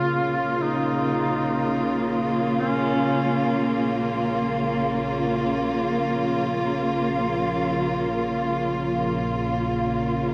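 Floating in free time, this dark, unsettling ambient fragment opens with a warm, vintage-toned solo duduk singing a brief folk-style melody with vibrato and delay, heard only until 3.5 seconds. Beneath it, a close, woody chamber cello section holds sustained bowed chords up front for the full 10.3 seconds. Far in the background, a detuned, organ-like drone with ring modulation and a moving notch fades in, all set inside a vast, wet reverb with an 8.9-second tail.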